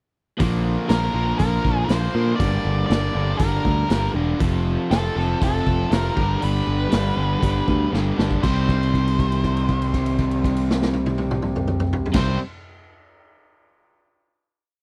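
A straight 4/4 pulse at 119 BPM drives this short, swaggering classic rock piece in C minor, where a gritty, boomy garage drum kit up front lays down a big rock groove and a direct, picked electric bass pounds out eighth notes beneath a cranked stack guitar's overdriven power chords and a bright, crunchy second guitar's open chords in the background, while a dark octave-fuzz lead guitar states song-like motifs from 0.9 seconds, the pre-chorus moving through Bb, Gm, F and G before a drum fill at 7.9 seconds lands on a held C minor chord from 8.4 seconds, all captured in a dry, close 1970s-style studio sound.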